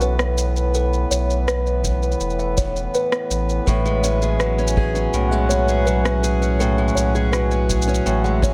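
A deep, round sine sub bass sits up front in this hopeful folktronica fragment at 82 BPM in a straight 4/4. Above it sit reedy, breathing pedal harmonium chords and a delicate, tinkling music box that is slightly out of tune and carries a delay in the background. Overdriven electronic shaker and rim click play from the start, a boomy, airy kick drum joins in the background at 1.8 seconds, and at 3.7 seconds a warm, picked acoustic archtop guitar steps forward with delayed arpeggios as the harmony moves from Asus2 to F#madd9/A.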